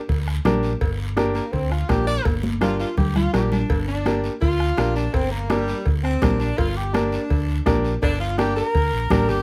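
Cumbia in G minor at 166 BPM, this driving, danceable excerpt opens at 0.1 seconds with a dark, round hollow-body electric bass over bombo, hard-handed high-tuned congas, ringing cowbell and timbales and raspy guiro; a clear, woody upright piano with audible action noise joins at 0.5 seconds, and a warm, close-miked jazz-style saxophone section takes the melody up front from 1.3 seconds, with a brief drum fill and light reverb.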